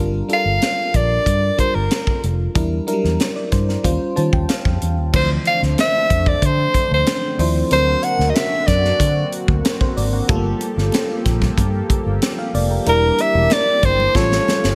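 This polished 1980s jazz-funk pop excerpt opens with a glassy, bell-like FM electric piano and a dark, round, foam-muted fingered bass, joined almost at once by a clear soprano saxophone carrying the melody with light vibrato and a tight funk kit with a high-tuned snare and gated reverb, all in a nocturnal, urban mood over chords like Gm7 and Em7b5. The electric piano plays a fill just before a shimmering, chorused pulse-width pad enters at 5.1 seconds with sustained chords. Distant, very quiet congas join at 10.3 seconds, and a drum fill closes the passage over an Aaug7.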